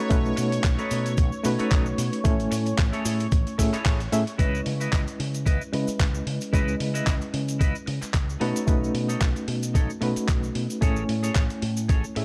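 Nu-disco at 112 BPM in 4/4 with a light 16th-note swing, this short cut from a longer piece sits in C# minor and feels cosmic and sleek. A barky, reedy electric piano carries the accompaniment up front, its fast tremolo and built-in-speaker tone pumped by sidechain, darkened by a low-pass filter and trailed by analog delay, and from 4.4 seconds a filter sweep runs across it. Until that point a lush, detuned unison pad holds sustained chords with chorus and sidechain pumping, and throughout the clip a clean, twangy picked electric guitar plays a riff through analog chorus and delay. Underneath, a bright fingered electric bass with an envelope filter moves over chords from B9 and Amaj7 to C#m9 and back, alongside a thumpy, compressed electronic kick, a gritty, dusty soul sampler-style kit of handclaps and hi-hat re-recorded in a large room, and a vintage, band-limited cabasa. The opening works as a drop that ends with a band accent at 3.9 seconds, and the whole sound is dry and gritty with little reverb.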